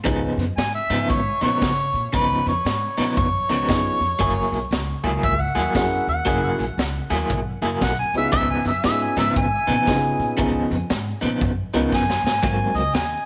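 Recorded in a small, lightly reverberant room, this excerpt from a laid-back, swaggering electric blues shuffle in Db mixolydian swings at 116 BPM over Db9, Gb9 and Ab9 chords. A mellow harmonica with overdrive, tape echo, light vibrato and scooped notes plays an up-front jazz-style solo, while an electric guitar through a small old amp picks a slightly broken-up, compressed riff with tremolo. A woody pizzicato upright bass and a gritty garage kit with a punchy kick and high-tuned snare drive the groove. A boxy, dark grand piano comps briefly at the very start and again from 3.7 seconds, and the drums play a fill at 11.9 seconds.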